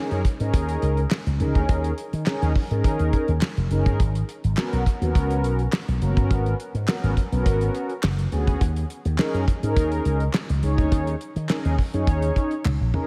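Lightly reverberant studio ambience frames this late-night, slick excerpt of early-eighties boogie funk, where a damped 70s drum kit with a fat snare, tight kick and rolled-off top sits up front beside a growly, bright slap bass through an envelope filter, while round, detuned synth brass with chorus and ring modulation sustains over D#7sus4 and G#m11 chords, a crisp group handclap stays in the background from 1.1 seconds, and a drum fill closes at 12.7 seconds.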